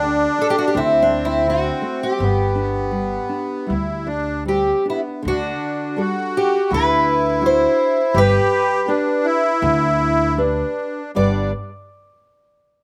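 The fingerpicked twelve-string acoustic guitar carries the melody up front, its shimmering, octave-doubled tone giving this nostalgic, tender fado-style ballad its glow. Beside it, a reedy accordion with light tremolo tuning sings a sweet second line, both instruments touched by slapback echo. A classical nylon-string guitar, bright and fingerpicked, fills in the accompaniment with its own slapback echo, while a pizzicato upright bass with steel strings adds a woody, thumpy foundation. The piece moves at 82 BPM in 4/4 with a rubato feel in G major, drifting through Dsus4, D5, G and Dadd9 harmonies. The sound is dry and open, with little reverb and an outdoor setting free of room tone, and the passage is cut from a longer piece, with all four parts playing throughout until 11.5 seconds.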